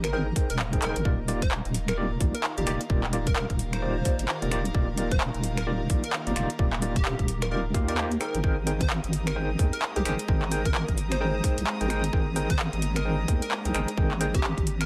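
Soulful and sunny, this two-step UK garage excerpt moves at 130 BPM in Eb major with a swung 16th-note feel, shifting from Abmaj9 to Ebmaj9 at 1.1 seconds and back to Abmaj9 at 8.2 seconds. An up-front, tight electronic kick and a garage kit of finger snaps, handclaps and metallic hats, with a drum fill at 0.8 seconds, sit under a deep, chorused wobble bass that pumps with the sidechain. A catchy, bright plucky unison lead with analog chorus and tape echo carries the melody, while gritty, barky electric piano stabs with fast tremolo and tape echo, a silky, warbling string machine and a dark, floating bowed string section pumping in the background fill out the light reverb.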